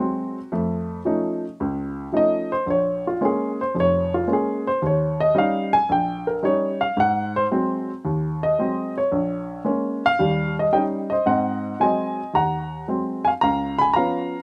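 Recorded dry and outdoors, this short cut from a longer solo jazz piece puts a dark, mellow baby grand piano up front in an intimate, natural sound with audible action noise and short sustain, swinging at 112 BPM in Ab mixolydian over a sophisticated, warm progression of Ab7, Bbm7 and Eb7 before a new passage from 11.3 seconds returns to Ab7 and then moves to Db7.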